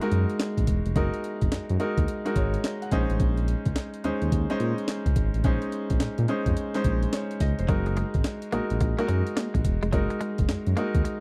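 A dry, close recording with a 1970s studio character opens this slick, bouncy slice of new jack swing R&B, cut from a longer piece and moving at 107 BPM in 4/4 with a 64% swing on the sixteenths. A gritty, compressed breakbeat kit sits up front, its pitched-up sampler sound built from a thumpy kick, medium-tuned snare, hi-hat and handclaps. Beneath it, a smooth synth bass blends sawtooth and triangle tones into a dark, sustained low end with a fast attack. A brilliant concert grand piano, polished and present with deep bass and short sustain, carries the accompaniment through chords of Gb69 and Bbm11. At 7.7 seconds a clean, twangy electric guitar recorded direct slips in with a picked, scooped riff coloured by analog chorus, riding the return to Gb69 to the close.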